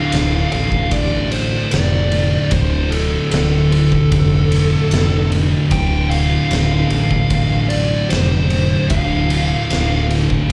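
A compressed fuzz lead guitar carries the melody between A4 and G5, its distorted tone thrown back by slapback echo and analog delay until it stops at 10.1 seconds, in this heavy, ominous stoner and doom metal fragment at 75 BPM in 4/4, sitting on D minor. Beneath it, two dark fuzz guitars pick a riff from D2 to D3, one in the background and one very quiet, while a growling, overdriven fingered bass moves between D1 and A1. An oversized, low-tuned acoustic kit pounds out punchy kick, fat snare and shadowy ride in a bright stone room with a pumping, gritty edge, all heard as a live club gig through the venue's PA.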